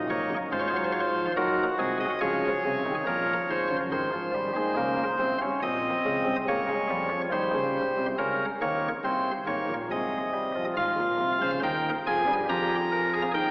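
Driving and solemn, this classical, baroque-style four-part fugue for pipe organ is carried by a lone chamber organ on a nasal cornet solo stop, its chiff sitting up front across a range from Gb1 to Bb5, while a wet church reverb with a 3.5-second decay and an AM-radio sound frame this fragment cut from a longer piece, which shifts into a new section at 10.8 seconds.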